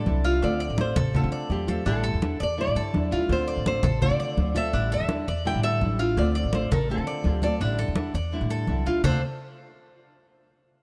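A lightly reverberant recording carries this danceable, sultry excerpt of Cuban son and guajira in D minor at 167 BPM, in a straight 4/4 feel that alternates Dm7 and A7sus4 before reaching a D7 chord with its third omitted at 9.0 seconds. A fingerpicked nylon-string guitar with fresh strings carries the melody, while a second, darker nylon-string guitar fingerpicks the accompaniment and a warm Cuban tres adds metallic, double-strung arpeggios. Underneath, a woody, growly pizzicato upright bass sits up front beside bright, thin-skinned, closely recorded congas that play from 0.1 to 9.1 seconds.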